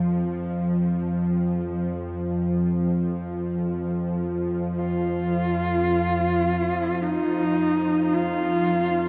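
Unfolding in free time, this short fragment of dark ambient drone feels dark and desolate from its first moment. A bowed-like drone holds the low register from the start, its string-like, tense tone blending a sawtooth edge with a sine body, a noise layer and a touch of vibrato, with slow attacks and long, sustained releases bathed in its own reverb. At 4.8 seconds a horsehead fiddle enters up front as the melody, played by one player on horsehair strings with a husky, smooth-topped tone. Its expressive line hovers in a narrow upper range, colored by vibrato, soft attacks and portamento, and trails into a diffuse ambient delay. Both parts sit inside a huge, wet ambient reverb, giving the dark, warm production a vast, lonely space.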